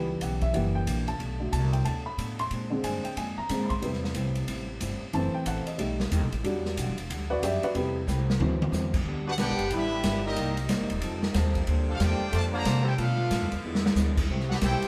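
Brassy and energetic, this big band swing excerpt opens with a dark, mellow baby grand piano solo over woody, growly pizzicato upright bass, a clean hollow-body jazz guitar in the background and a punchy, airy drum kit with fills at 8.1 and 13.6 seconds, until the piano stops at 9.0 seconds and a brilliant trumpet section takes the melody over a tight trombone second line and soft-edged saxophone chords, all in a moderate live-room reverb.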